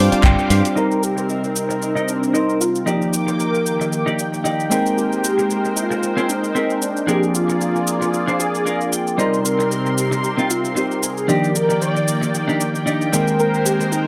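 Swung 16ths at 114 BPM in 4/4 drive this cosmic, sensual nu-disco cut in C minor, where a house drum kit of handclaps, warm hats and shaker sits in small room ambience beneath a bell-like tine electric piano with sidechain pumping and tape echo, a lush, airy, detuned sawtooth pad with chorus and phaser, and a twangy twelve-string electric guitar riff roughened by 12-bit sampler grit, while a round, foam-muted fingered bass sounds only until 0.6 s, a clean electric guitar fill opens the piece and returns at 8.1 s, and from 0.8 s a bold, wave-folded unison lead with vibrato and dub echo carries the melody over chords moving from Cm7 through Ebmaj7 and Abmaj9 to Bb7.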